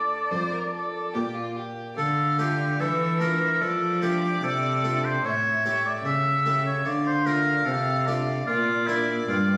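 Flowing and solemn, this baroque-style sonata movement with continuo moves in a steady, straight four, taken from a longer piece. A bowed violin carries the melody with focused vibrato, though it sits distant and softer in the balance. An oboe shapes the second line up front, with light vibrato, a soft attack and a clear classical tone. Beneath them, a single cello plays a rich, close bass line with its own vibrato, while a dry, brilliant harpsichord with octave strings fills out the plucked accompaniment. After a brief opening phrase, the music shifts into a new section at 2.0 seconds, and the harmony moves from D minor to A7, back to D minor, then to B-flat. The sound is set in a moderate recital hall reverb, and the phone recording adds club-like reverb and compression.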